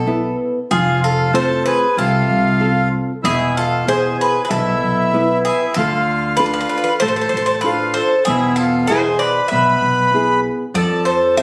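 Captured on a phone in the room, this short cut from a longer Greek folk piece carries a light reverb along with studio reverb and compression. A bouzouki sits up front with the melody, its picked double strings sounding bright and metallic, some of them octave-doubled, and treated with a plate reverb. A fingerpicked nylon-string guitar provides classical-style accompaniment, and a pizzicato upright bass adds a dark, woody low end. At 0.7 seconds the accordion arrives with a reedy, airy second line that is full and rich, standing up front beside the bouzouki. The straight 4/4 groove gradually speeds up while the harmony moves through F, E and Dm, giving the piece a bittersweet, moody character.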